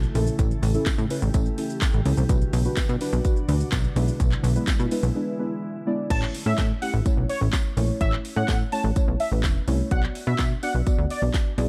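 A straight 4/4 house groove at 126 BPM, with a punchy kick, cracking snare and metallic hats up front, drives this carefree, upbeat dance-pop excerpt, where a funky, plucky analog bass and soft, deep chord stabs pump against the kick over a glassy FM pad that drifts in the background until 6.1 s, a jingly tambourine sits close and dry behind the kit, and a bold, detuned octave-doubled lead with chorus and phaser arrives at 6.1 s over A and Bm chords in a dark, dry mix.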